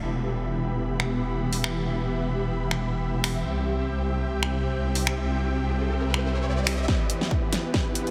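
A half-time 4/4 groove with lightly swung sixteenths drives this heavy, chaotic wobble dubstep fragment, drenched in a dreamy cathedral reverb. Lush, detuned supersaw chords pump under sidechain and a low-pass filter sweep, moving from Em to C, while a saturated square-and-sine wobble bass with chorus and overdrive sits up front until 6.9 s. A dubstep kit of finger snaps, bright high-passed hats and a huge snare comes in at 1.0 s, a riser builds in the background from 5.0 s, and at 6.9 s a punchy, tape-warm electronic kick joins a drum fill as the build-up lands back on Em.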